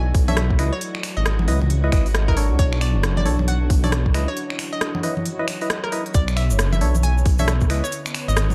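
A dark, detuned sawtooth bass sits up front, deep and rumbling with a beating quality, anchoring this bouncy, soulful two-step garage excerpt cut from a longer piece. A tight, tape-warm electronic kick and a garage kit of crisp hats, congas, finger snaps and rim clicks, both re-recorded in a large room, carry a swung groove. Above them, a hollow, bright square-wave pluck carries the melody through chorus and dub echo, while a percussive, organ-like stab with a noise layer adds its own echoing hits. In the background, a silky vintage string machine warbles through ensemble chorus, holding sustained chords that move between Bm9 and C#m9, while a deep, moody ambient pad adds sustained texture, both breathing with sidechain pumping. A break arrives at 4.4 seconds, and a grainy, close, dry tube shaker joins at 6.1 seconds, all set in a dark production with light reverb.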